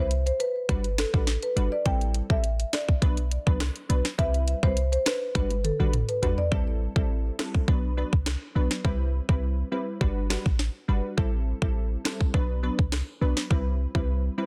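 A straight, bouncy dancehall groove from a tight, gritty island pop drum kit with sharp snare, rim click and toms drives this hypnotic passage, as a deep, boomy 808-style bass and crisp, detuned wavetable chord stabs cycle through Cmaj7, Gmaj7, Am7 and Bm, while a woody, close-miked marimba with digital delay carries the melody until a drum fill ends at 6.5 seconds and the hi-hats fall silent for the rest, in a dense, heavily limited mix with little reverb.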